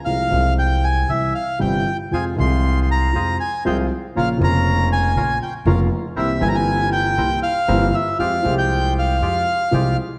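A reedy, up-front bandoneon sings a sultry, dramatic tango melody in a high register over a dark, mellow grand piano with deep bass and a woody, thumpy pizzicato upright bass on gut strings, all moving with a loose rubato feel, while from 2.1 s a second, vintage-sounding, band-limited bandoneon adds quieter stabs beneath, everything set in a moderate scoring-stage reverb in this short passage cut from a longer piece.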